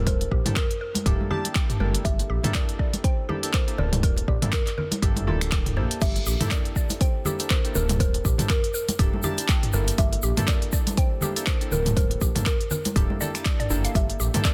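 A deep, up-front electronic kick anchors this warm, hypnotic afro house excerpt at 121 BPM in 4/4, with 57% swing on the sixteenths and a G dorian color over a single Gm69 chord. Beneath it, a dark, gliding synth bass with vibrato and portamento pumps against the sidechain. A layered drum kit adds smooth hats, finger snaps, handclaps, toms, a crash and a snare with soft clipping, while ringing congas played with gentle hands sit close, and a grainy, bright tube shaker joins at 6.0 seconds. Round analog keys deliver stabs with chorus, tape echo and a filter sweep. In the background, a woody, warbling FM mallet pluck spins arpeggios through chorus, pumping and echo, and a mellow kalimba adds a short, plucked melody with tape echo, the mix sitting in a digital ambience under a dense, heavily limited modern master.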